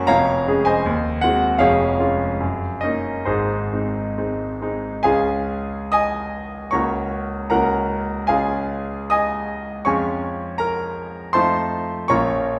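A wet recital-hall reverb, lingering about 1.5 seconds, surrounds a single concert grand placed up front in a church or concert hall. This is a romantic classical character piece for solo piano in Db major, hopeful and passionate in mood, heard as a brief passage cut from a longer work. The piano alone carries everything, spanning F1 to Eb6 with a polished, present tone, a deep bass and a short sustain on its notes. The tempo moves freely between 66 and 82 BPM in 2/4, with a rubato feel that lets phrases breathe. An opening idea circles Db, Ab7 and Ebm7 harmonies before resting on Ab, and at 5.1 seconds a second idea begins on Db, moves through Gb over a Db bass, and turns to F7 at 11.3 seconds as the passage breaks off at 12.6 seconds.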